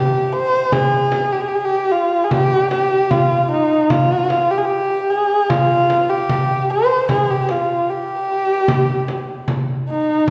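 A single bowed kamancheh opens at 0.0 s with a dark, woody tone, singing a passionate, stately melody between Eb4 and C5 with rich vibrato and gliding portamento, close and up front. At 0.7 s a small, bright frame drum joins under hard hands, also up front, setting a straight 4/4 pulse at 75 BPM in this Turkish makam ensemble passage, tuned to A4 = 437 Hz. A lush recital-hall reverb, heard from further back in the room, surrounds the pair throughout this fragment of a longer piece, which runs to 10.3 s.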